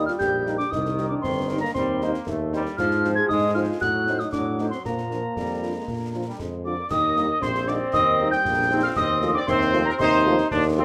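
A straight 2/4 march at 116 BPM in Eb major gives this spirited, festive wind band fragment its military stride. Dark, distant trumpets carry the melody with light vibrato, while a pure, tongued wooden piccolo and a roomy euphonium in the background add second lines alongside a mellow horn section, vintage-tinged trombone chords and an up-front tuba bass. Concert snare, bass drum and dark clash cymbals sound from a small room under a moderate spring reverb, and the harmony passes through an Adim7 before the music turns to a new section at 6.9 seconds.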